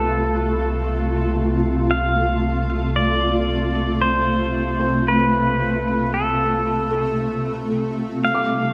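A slow, straight triple metre drifts beneath this weightless, serene ambient fragment, cut from a longer piece. Up front, a clean, twangy pedal steel guitar carries the melody with slide and volume swells, its tone given a soft trail by tape echo. Equally prominent, a shimmering pad holds sustained chords, its detuned, granular texture lifted by an octave-up sparkle, chorus and its own reverb. Beneath them, a felt-muted upright piano plays very quiet, intimate arpeggios with audible action noise, while a round, deep analog bass anchors the low end and fades out over the whole passage. The harmony rests on F over C before settling onto C at 8.2 seconds, and a nasal, pulse-width-modulated drone slips in at 8.4 seconds in the background, all placed in a lush scoring-stage reverb.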